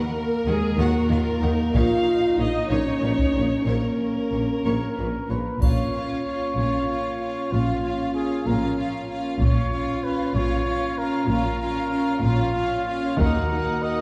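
A compressed, saturated taiko ensemble struck with hard sticks drives this dark, epic orchestral film-score excerpt in a slow 6/8 at 63 BPM, entering at 1.7 s beneath mellow horn chords, rich bowed violin, viola, cello and double bass sections, a faint distant tuba, an up-front mellow trumpet playing stabs from 4.7 s and a brief background triangle, all moving between Eb minor and Bb minor chords within a wet scoring-stage reverb heard from further back in the room.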